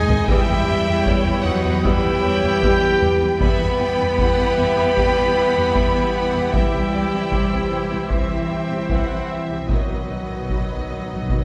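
Warm French horns stand out in this adventurous, heroic cinematic excerpt, holding sustained chords at the front of a full orchestral score that moves at 76 BPM in a straight 4/4. Lush, bowed violins carry the melody with a focused, smooth-topped vibrato, joined by a second violin line, while a very quiet string section and a soft viola accompaniment fill out the harmony. Cellos and a distant, bowed double bass section hold down the bass in the background, beneath punchy, close-miked trombones sustaining chords and a clear, roomy solo trumpet adding stabs. Heavy-sticked taiko drums, close and dry, drive the piece from a drum fill at the very start, and round, soft-malleted timpani on calf heads enter with a fill at 9.7 seconds. The harmony moves from E minor to C and then to B, and a concert hall reverb places the ensemble further back in a spacious room.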